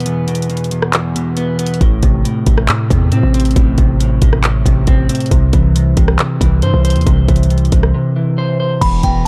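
A half-time trap groove drives this melancholic, hard-hitting hip hop excerpt, with an electronic, up-front kit of knocking kick, bright hats, handclaps, rim clicks and crash sitting alongside a dark, clean, picked electric guitar colored by analog chorus and a low-pass filter. At 1.8 seconds a punchy, heavy 808-style sine bass with a noise layer and fast, decaying attack enters as the harmony moves from E5 to Am, then to C. Near the end, at 8.8 seconds, a delicate, tinkling FM synth tine bell appears, shimmering with chorus, phaser and tremolo in a dark, dry production.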